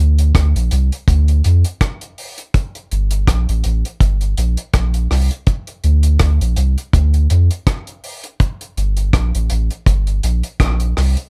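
A soft, round dub sub bass opens this short roots reggae excerpt, sitting deep and up front with a fast attack and long, sustained notes that mix triangle and square wave tones. A moment later, at 0.2 seconds, a dry acoustic drum kit joins with hi-hat, a tight kick drum and rim clicks, its mid-forward sound also placed close to the listener. The groove moves in 4/4 with a light swing on the sixteenths, and the mood is meditative and serious. The bass stays low throughout, holding the foundation beneath the more restrained kit. Heard with little reverb, the pairing feels intimate and uncluttered, as though lifted from a longer piece.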